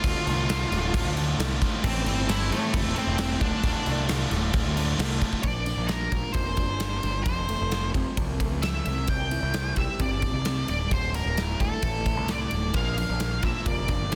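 A dark octave-fuzz lead guitar carries the melody up front through this brooding, cathartic fragment of quiet-loud alternative rock in D minor at 132 BPM, over a punchy overdriven fuzz bass and a big, polished drum kit with bright cymbals and an airy stone-room sound. The opening moves through Dm and Am with a thick fuzz guitar riff, a bright overdriven guitar riff and a very quiet, lush bowed string section holding sustained chords. At 5.4 seconds those three drop away and a picked steel-string dreadnought acoustic takes up arpeggios over Bbadd9, F and Cadd9, before the overdriven riff guitar returns at 12.7 seconds on Bb within a dense, heavily limited modern master.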